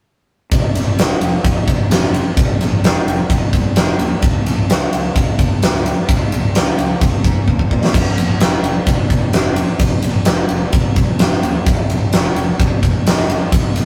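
At 0.5 s, a huge arena drum kit and a fuzz-driven, fingered electric bass begin together in this aggressive, menacing hard rock excerpt, moving at 129 BPM in a straight 4/4. The acoustic kit sits up front, with bright crash and ride cymbals, a fat snare and a punchy kick giving the groove its weight. Beneath it, the overdriven bass stays in the background, its growly fuzz tone ranging from F1 to Bb2 and thickening the low end. A short drum fill at 7.5 s breaks up the pattern before both parts carry on to the cut at 13.8 s. The rough rehearsal-room sound, with little reverb, keeps the menace raw and close.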